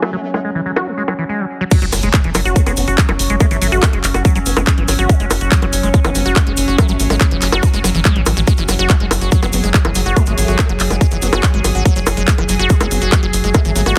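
Psychedelic trance, cut from a longer piece, opens with a filter sweep on a squelchy, phased liquid acid bass riff. Beneath it sit a bright, overtone-sweeping drone, a background formant-sweep wobble bass line and a muffled, low-pass-filtered garage drum kit of bongos, handclaps, hi-hat and crash. The drop at 1.7 seconds brings in an up-front, layered electronic kick, a punchy sawtooth sequencer bass, a grainy background cabasa and, just after, a very quiet impact. Sidechain pumping drives the acid bass, drone and wobble bass in a dry, heavily compressed, radio-like mix.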